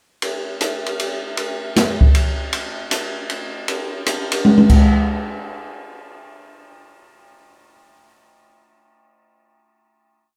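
Jazz in a swung three-four, spiritual and intense, this whole piece is a short acoustic drum kit performance, with a stick-played ride cymbal pattern over dark cymbals, a medium-tuned snare and a boomy kick set up front in a club reverb, running from 0.2 seconds to a fill at 4.5 seconds and ending on a final hit that rings out to 7.1 seconds.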